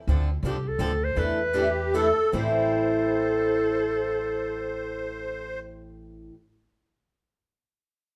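A swung lilt in three drives this short cut from a longer piece of acoustic string swing in the jazz manouche style, and it slows down over its opening seconds. Two picked acoustic guitars share the accompaniment: a dark, ladder-braced old instrument and a bright swing-style guitar with fresh strings sitting a little lower in the mix. Beneath them, a pizzicato upright bass on gut strings gives a woody, thumpy foundation. At 0.5 seconds a clarinet takes the solo melody up front, with vibrato, scooped notes, a soft attack and a smooth top. A reedy musette accordion joins at 1.5 seconds as a shimmering second line in the same register, with a boxy small-room character. The harmony moves from Dm7 through E7sus4 to Am7, all in a moderate club reverb that gives the swinging, virtuosic mood a room around it.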